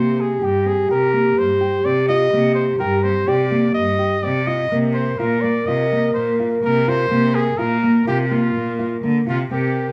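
In a straight 5/4 at 125 BPM, this pensive, restless chamber piece cut from a longer work sets a clear, punchy flugelhorn melody with vibrato over a mellow clay ocarina's airy, chiffy second line, thumb-plucked nylon-string guitar arpeggios, and a rich bowed cello bass held close and up front, all in light studio reverb as the harmony moves from Cm7 to a rootless Ebsus2 at 4.7 seconds.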